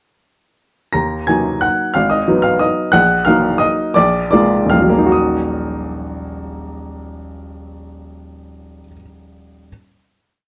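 Classical piano waltz in Eb minor, wistful and bittersweet, with a rubato 3/4 lilt between 138 and 192 BPM, in which a solo upright piano, bright, woody and intimate with audible action noise and short sustain, enters at 0.9 seconds to play its tune in octaves over a waltz bass, slows from 2.4 seconds, and settles onto a final Eb minor chord at 5.1 seconds, all set up front in a moderate large-studio reverb within a dark production.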